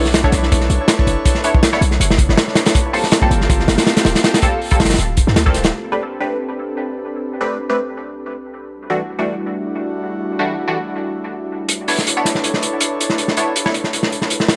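A crunchy, saturated breakbeat kit with a punchy kick and gritty, rolled-off top sits up front in this atmospheric, nostalgic drum and bass excerpt at 161 BPM in A dorian, alongside a deep, boomy 808-style bass until 5.7 seconds, after which the drums drop out and return at 11.7 seconds. Nasal, band-passed sawtooth chord stabs run through phaser, analog chorus and dub echo, with a filter sweep on them through the opening, while an airy, breathy pad holds soft detuned chords that take their own filter sweep from 5.7 seconds. Chords move through Bm11, Gm11, Am11 and Em11 in light room ambience, with a faint mains hum underneath.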